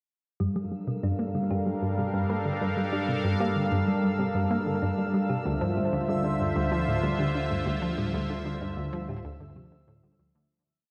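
A steady, straight 95 BPM pulse in 4/4 drives this short, complete piece of ambient, sequencer-driven space music in G dorian, cosmic and mysterious as it moves from Gm7 to Dm7 at 5.5 seconds. A bright, detuned analog pluck repeats a 7-step riff that drifts against the bar, while a dark, tine-like FM pluck in the background runs a 12-step arpeggio loop through tape echo and shimmer reverb, under a filter sweep. An airy, evolving resonant pad sits up front with sustained chords, a warbling vintage drone enters at 1.4 seconds on the root, and a bubbling high texture fades in on a held note, all bathed in a long plate reverb and heavy echo before the fade-out from 7.1 seconds.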